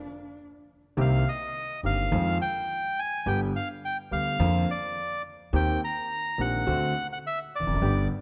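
Tango in C minor at 105 BPM in 4/4, played with a rubato feel and a sultry, dramatic mood, taken from a longer piece and tuned slightly low, with A at 439 Hz. After a brief stop, the bandoneon, grand piano and upright bass all enter together at 1.0 seconds and play through to 8.1 seconds. The reedy, bright bandoneon carries the melody up front, staying high between D5 and Bb5, while the clear grand piano accompanies with long sustain and a present sound. The pizzicato upright bass, with steel strings and a woody, growly tone, sits slightly louder in the mix, anchoring the low end between E1 and F2. Close, detailed microphones and light reverb frame the harmony as it moves from Cm7 through Fm7, G, Bbadd9/F and Eb6 to a closing D7.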